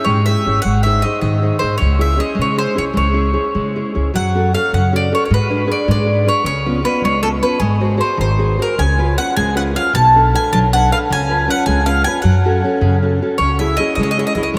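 A picked mandolin with warm double strings opens this fragment of an Italian folk serenade, joined at once by a full-bodied, fingerpicked nylon-string guitar and, an instant later, a pizzicato upright bass with a woody steel-string tone. The mood is romantic and wistful, moving in 6/8 at about 104 BPM with a loose, rubato feel. The mandolin carries the melody up front, while the guitar supplies a deep classical accompaniment close beside it and the bass anchors the low end. The harmony begins in C# harmonic minor, then shifts to F# harmonic minor at 4.1 s, passing through chords such as G#dim, C#7 and Bm7 before settling back on C#m at 13.4 s. A huge, wet reverb places the trio in a vast, echoing space, letting each note hang long after it is played.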